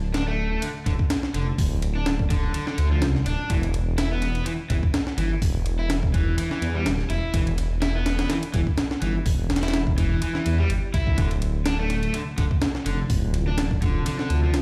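A swung sixteenth-note breakbeat groove drives this funky, energetic clip from a longer breaks track, with a compressed, gritty sampler-style kit of thumpy kick, high-tuned snare, hi-hat and ride sitting up front beside a deep, rumbling detuned saw bass, while a crunchy overdriven electric guitar riff carries 12-bit sampler grit and dub echo, the harmony settles on Dm7 at 11.2 seconds, and a moody ambient pad with chorus and sidechain pumping drifts in at 12.2 seconds, all inside a big, reverberant bare-room sound.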